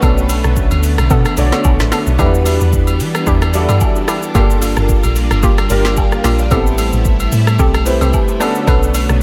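A late-night, hypnotic amapiano groove at 111 BPM in E minor, cut from a longer piece, opens with the full arrangement at once: an electronic afro-pop kit with a deep kick, woody snare and dark hats sits up front beside a round, percussive log drum bass with a fast, decaying attack. Warm grand piano accompaniment with ensemble chorus, a shimmering vintage string machine pumping under sidechain, and a hollow, bouncy square-wave pluck tucked in the background through chorus and tape echo move through Bm7, Em7, Gm7 and Am7. Agogo bells and woodblock add a compressed, saturated layer of percussion, while a light reverb and a swung 16th-note feel hold the mood steady.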